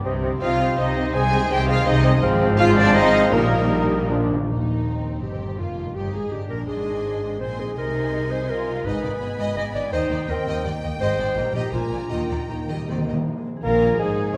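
Heard through a wet recital-hall reverb, this fast, stormy romantic orchestral passage in 3/4 at 165 BPM moves with rubato in Eb major. Lush bowed violins carry the melody over a second violin section with a rich, focused tone, while softly attacked violas, smooth cellos and distant double basses fill out the harmony and bass; a mellow clarinet adds a second line throughout, and a ringing fingerpicked harp plays arpeggios underneath. Vintage-tinged trumpet stabs sound only in the opening 4.3 seconds, while pure flute, roomy oboe, close-miked bassoon, very quiet horns and tight trombones mostly gather in that opening stretch and return near 13.6 seconds, and round, soft-mallet timpani fills sound at 4.1 and 12.1 seconds.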